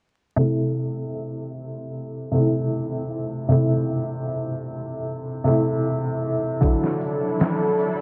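A slow, straight 77 BPM trip hop groove in 4/4 and A dorian, this smoky, melancholic excerpt opens at 0.4 seconds with a felt-muted upright piano playing soft, intimate accompaniment over Am, its short-sustained tone colored by tremolo, a low-pass filter and tape echo. At 6.6 seconds the harmony moves to Dadd9 as a dark, woody string section enters with bowed sustained chords and light vibrato, alongside a gritty, pitched-down sampler-style drum kit with a thumpy kick, medium-tuned snare and hi-hat. A filter sweep runs throughout, and the dreamy mix is soaked in a huge ambient reverb with vinyl crackle.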